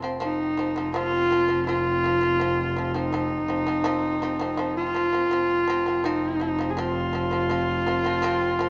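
In a straight 4/4 at 82 BPM, this short excerpt of Mongolian folk music feels windswept and vast, anchored by a rich, reedy double bass holding a gut-string drone on F1 while a buzzing, plectrum-plucked shamisen spins percussive arpeggios above it. From 0.2 s a husky, earthy horsehead fiddle sits up front with the melody, its clear tone gliding through portamento. Both bowed parts carry light vibrato, and a wet concert-hall reverb with a faint mains hum surrounds the trio.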